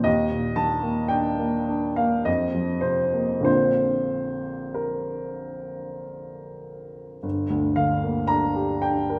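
In a loose, rubato triple metre, this hazy, dreamy fragment of an impressionist classical piece for solo piano drifts through suspended and added-note harmonies before turning toward G minor as a new passage begins at 7.2 seconds. The warm baby grand sits up front with an open tone and long sustain, spanning from low bass to the upper register. A wet scoring-stage reverb surrounds it in a spacious, lingering glow.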